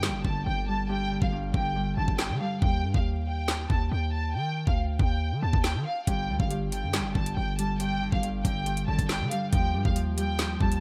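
Ominous and cold, this drill cut moves at 139 BPM in a half-time 4/4 feel in G minor, and it is lifted from a longer piece. Up front, the electronic drum kit pairs a knocking kick and a woody snare with metallic hi-hats and handclaps, all set in gated reverb. A distorted 808-style bass sits just as far forward, heavy and saturated, with a fast attack that decays and a noise layer over its sine core. Above them, a lush studio violin section carries the melody, bowed with vibrato and a smooth, focused top, softened by a low-pass filter. A fingerpicked Celtic harp adds ringing acoustic accompaniment under the same filter, dropping out at 2.7 seconds and returning at 6.1 seconds. The bright 1980s-style digital production carries a light reverb and a bed of vinyl crackle, while the harmony moves from G5 to Eb and back, settling on Ebadd9 at 9.5 seconds.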